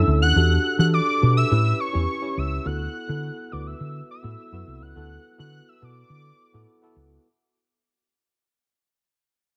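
Polished 1980s jazz-funk pop with a breezy, upbeat mood, this short fade-out excerpt moves at 104 BPM in a straight 4/4 through Em11, A7 and D69 in D major, tuned slightly flat to A4 = 438 Hz. A fat, detuned sawtooth analog lead with a sub octave, chorus and vibrato carries the melody high and up front, its mellow tone evolving over sustained notes. Beneath it, a worn, slightly out-of-tune tine electric piano with subtle chorus provides accompaniment, while a dark, round, punchy hollow-body short-scale electric bass sits loudest in the mix, all in light reverb.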